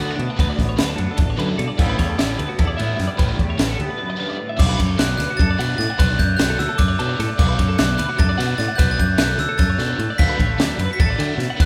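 A scooped, twangy electric guitar, a bright, compressed twelve-string electric guitar picking arpeggios through a tremolo effect, a biting overdriven guitar riff set in the background, and a growling, overdriven fingered bass up front open this playful, bright math rock and midwest emo piece in 7/8 at 300 BPM in eighths. A compact cocktail drum kit with a punchy kick, a high-tuned snare and dark cymbals drives the band, which plays live in one room under a moderate large studio reverb. After a break from 4.0 to 4.6 seconds, a smooth, bell-like glockenspiel struck with brass mallets takes the melody over Bm9 harmony, while the scooped guitar drops out at 6.0 seconds.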